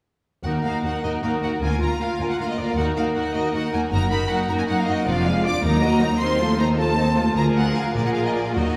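In a straight 6/8 lilt, this quick classical-period movement for symphony orchestra is dramatic and urgent, cut from a longer piece and playing from 0.4 to 8.8 seconds. A clear, focused first violin section carries the melody with vibrato over a rich second violin line, while violas and cellos add smooth, even accompaniment and bass, and the double basses anchor the bottom. The harmony moves from E-flat minor through diminished and dominant colors toward a Bb seventh that settles on a bare fifth, and a wet scoring-stage reverb places the ensemble further back in the room.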